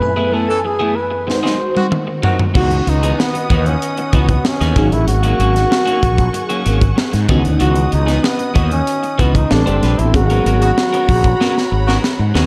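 Slick and urban, this polished 1980s jazz-funk pop clip at 95 BPM sets a breathy, scooped flugelhorn melody up front over a dreamy FM electric piano with a soft pad layer, phaser and ensemble chorus, lush bowed strings in the background, and a compressed, picked guitar riff at the edge of break-up with analog chorus; a tight horn section with tape echo adds a second line from 0.5 seconds, a crisp, punchy fusion drum kit with a high-tuned snare arrives at 1.3 seconds with fills, and a growly fretless bass joins at 2.5 seconds, all in a dark, small-room production.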